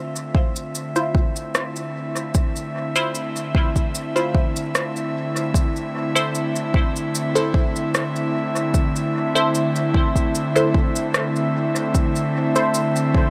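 An airy, breathy pad fades in from the start of this meditative ambient dub excerpt, holding sustained chords coloured by chorus. A deep, up-front electronic kick drum and a tape-tinged electronic shaker and rim click, the latter trailing dub echo, settle into a straight groove as Dm9 gives way to Am/D at 5.5 seconds. From 1.0 seconds a muted, nasal filtered chord stab adds short phased accents with dub echo, all washed in a huge ambient reverb.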